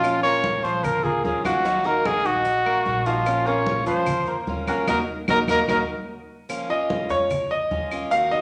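Latin Cuban son and guajira in Bb minor at 149 BPM, this sultry excerpt sets an up-front trumpet singing with vibrato over a fingerpicked nylon-string guitar line, a boxy picked archtop, brilliant arpeggios from a bright, worn concert grand, thumpy gut-string upright bass, thick-skinned congas, woody claves and grainy maracas, all bathed in a large studio reverb, with a band accent at 4.9 seconds before the piano takes a solo from 6.5 seconds.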